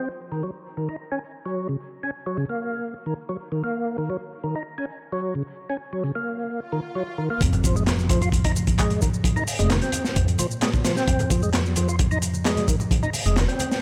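An up-front, fat tonewheel organ opens this short, energetic funky breakbeat excerpt at 131 BPM in a straight 4/4, its lightly overdriven tone carrying key click, percussive attack, chorus vibrato, a slow rotary speaker, a low-pass filter and dub echo as it plays a riff over Ebm7 in F phrygian. At 6.7 seconds an electronic swell rises and hits an impact as the drop lands at 7.4 seconds, where the harmony moves to Fm7. There a crunchy breakbeat kit comes in, saturated and gritty with a punchy kick, medium-tuned snare, hi-hat and a dark, rolled-off top, placed up front in a studio room. A woody pizzicato upright bass enters with it, joined by layered, tape-warm electronic shaker and handclaps and very quiet, low-tuned congas with a thick-skinned, soft-handed sound. Studio ambience surrounds the whole groove.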